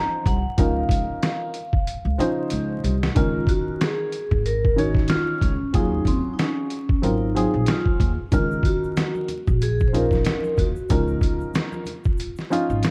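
Jazz-hop in Db major at 93 BPM with a swung 16th feel, this cool, smooth hip hop fragment sets a soft-mallet vibraphone melody with slow motor vibrato and an airy, ringing tone over a dark, mellow upright piano that sounds worn and slightly detuned, moving through chords such as Db69, Ebm11 and Ab13. A woody pizzicato upright bass and a gritty, compressed, pitched-down sampler-style drum kit with a thumpy kick sit under the melody, and the drums play a fill from 1.9 to 3.2 seconds. Soft-hand congas and an egg shaker join in the background at 8.3 seconds, all within a small room, light reverb and a tape-warm, vinyl-crackled haze.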